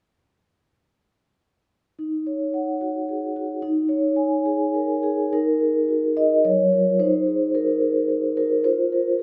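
Contemporary classical for solo vibraphone, this flowing, reflective excerpt from a longer piece unfolds in a rubato three-beat feel as the soft-mallet vibraphone enters at 2.0 s, its dark, mellow, ringing tone shimmering with fast motor vibrato, sitting up front in a moderate recital-hall reverb and drifting through minor-seventh and added-eleventh harmonies before settling on a bare fifth at 8.6 s.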